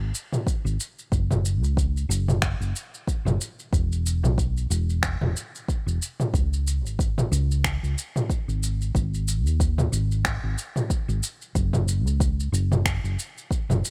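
A lightly swung sixteenth-note groove in 4/4 sets a smooth, warm sunset chillout mood, carried by a deep house drum kit of finger snaps, shaker and toms alongside a deep, layered electronic kick, both up front with a tape-warm character from being re-recorded in a small room. A dark, round, punchy hollow-body short-scale electric bass, fingered and amped, holds the low end from 0.0 seconds in this brief section of a longer piece. The whole mix sits close and dry, with little reverb.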